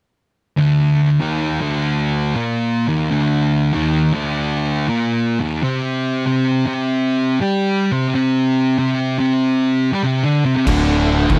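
This stoner and doom metal excerpt moves at a heavy, brooding 95 BPM in 4/4 with a swung eighth-note feel, as two dark, thick fuzz guitars play the riff up front from 0.6 seconds, shifting from Bbadd11/D to C5 at 5.6 seconds. At 10.7 seconds the harmony lands on D5 and the full band crashes in: a growly, overdriven fingered electric bass up front, a bright, double-tracked high-gain guitar riff in the background, an oversized low-tuned drum kit with a punchy kick and crash cymbal in a gritty, pumping stone room, and a very quiet, piping tonewheel organ holding sustained chords through a rotary speaker with key click. The mix is dry, with little reverb.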